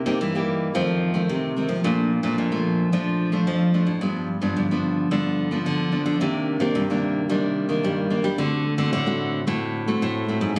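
A bright, fresh-stringed nylon-string guitar fingerpicks the chords from the first moment, joined at 0.1 s by a second nylon-string guitar carrying the bass line with a warmer tone and audible finger squeak, both close and full-bodied in a lively, nostalgic samba and choro groove at 110 BPM that moves through Cm7, F7, Bbmaj7, G7, Cm9 and D7, heard as a short cut from a longer piece with light reverb and the slightly roomy character of a phone recording.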